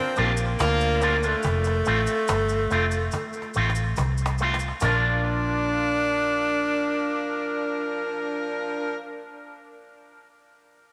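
A straight, unhurried 4/4 groove drives this laid-back roots reggae excerpt, set by a snappy acoustic cajon with snares and a cabasa tucked into the background, both heard in a small room. The cajon's hits trail off in tape echo, and it plays a fill from 3.1 s before both percussion parts drop out around 5 s. A dark, round, foam-muted fingered electric bass sits up front with an amped vintage tone, while a clean, twangy picked electric guitar runs through an envelope filter as accompaniment. Over this, a bright, punchy, close-miked tenor saxophone with vibrato carries the melody, and a warm horn section with light vibrato plays a second line alongside it; saxophone, horns and guitar each carry dub echo. An echo chamber reverb lends the short passage a moderate sense of space as the harmony moves from Bb to F and back to Bb.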